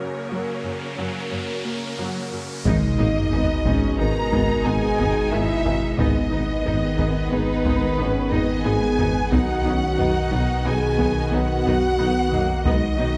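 A cinematic hybrid of orchestral and electronic film scoring, this futuristic, vast passage moves at 90 BPM in a straight 5/4 in G# minor, cut from a longer piece. It opens over an F# chord with an electronic riser, as a close, expressive chamber violin section carries the melody in the background. A distant, intense symphonic violin section plays a lush second line, while smooth chamber violas and an evolving, morphing wavetable pad with chorus and its own reverb hold the harmony and rich symphonic cellos carry the bass. A tight, driving sawtooth synth sequence sets arpeggios very quietly. At 2.7 seconds an impact and sub drop land on G# minor, bringing in mellow French horns, very quiet soft-attack trombones, a very quiet mellow tuba, a focused, very quiet double bass section, a round sine sub bass and a dry, close taiko ensemble struck with hard sticks, before the harmony turns to B at 9.3 seconds. 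A moderate concert hall reverb gives the orchestra a spacious, unified setting.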